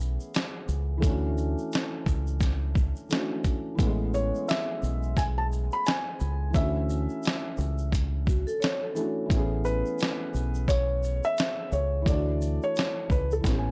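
Nostalgic and cosy, this lo-fi hip hop excerpt at 87 BPM swings gently over Amaj9 and Dmaj7 chords, with a thick-felted, muted upright piano on cassette-tape accompaniment, a round, punchy dub bass, and a gritty, compressed sampler-style kit with thumpy kick and fat snare up front, while a grainy egg shaker sits in the background, a mellow felt-muted piano melody with tape echo enters at 4.1 seconds, and a ringing soft-mallet vibraphone briefly joins at 8.3 seconds, all in a dry, gritty hardware sound.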